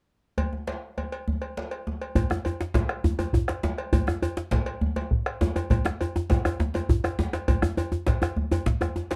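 This festive, earthy West African drum ensemble opens at 0.4 s with a metallic cowbell, set back in a small room and low in the mix, beside a warm, deep djembe struck with hard hands and placed up front in a live room. At 2.2 s the groove fills out as a deep, dark bombo arrives, close and dry and the loudest voice in the ensemble, together with a second, medium-tuned djembe whose metal rattles add a buzzing edge. The music moves at 135 BPM counted in dotted quarters, in a 12/8 metre with a straight feel. A drum fill from 8.5 s closes this short passage, which is cut from a longer piece. A moderate small-room reverb and a dark, warm production give the performance an intimate, grounded character.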